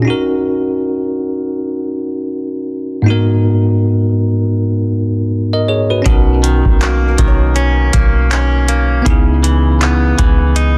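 A dry, dense and heavily limited mix carries this moody, late-night contemporary R&B excerpt, which opens with a bright, bell-like tine electric piano alone, moving through D#m7 and G#m7 with a swung sixteenth-note feel. At 6.1 seconds, several parts arrive together as the chords shift to Bmaj9, later moving to C#m9: a booming analog drum machine with a deep kick, metallic hi-hats and handclaps; a clean, boomy 808-style sine bass; and a twangy, direct-recorded electric guitar picking arpeggios through delay. Briefly from 6.8 seconds, a crystalline, detuned wavetable pluck with chorus and delay sits in the background.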